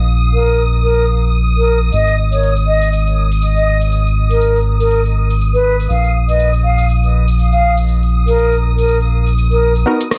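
A swung 121 BPM deep house groove in 4/4 sets a smooth, deep mood, as a round, dark analog bass and a shimmering vintage string machine with ensemble chorus carry A#sus4 and G#5 chords under an airy, mellow concert flute with delay, joined at 1.9 seconds by a grainy cabasa, before a muted, detuned dub chord stab with chorus arrives at 9.9 seconds and a brief house drum kit of hi-hat and rim click follows at 10.0 seconds, all under light reverb and a soft cassette tape haze.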